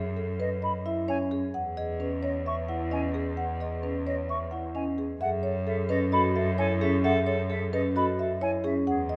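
A straight 4/4 pulse at 131 BPM drives this meditative, hypnotic stretch of minimalist classical pattern music in F# dorian, cut from a longer piece. Soft-mallet vibraphone ringing with a slow motor vibrato and a clear, smooth bowed cello holding the bass open the passage together, and a woody, round rosewood marimba enters at 0.2 seconds to carry the melody. A hollow silver concert flute joins at 0.4 seconds with pure, crisp-attacked arpeggios set high above, a little distant and touched with vibrato. At 5.2 seconds a bright, present clarinet adds a narrow second line in classical style as the harmony settles onto F#m9, after earlier moves from F#7sus2 to Emaj9. Light reverb and close, detailed microphones keep each part clear and detailed.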